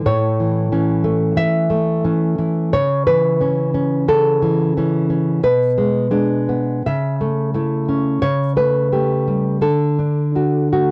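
A nylon-string classical guitar, thumb-plucked and up front, carries this tender romantic solo, its tone warm with an audible finger squeak. Played in A major at around 88 BPM in 4/4, the rubato timing stretches and loosens the beat as the harmony moves from A through A/C# and G#dim/B to A7/C#, settling on D near 9.6 seconds. Light reverb and a home cassette recording frame this short fragment of a longer piece.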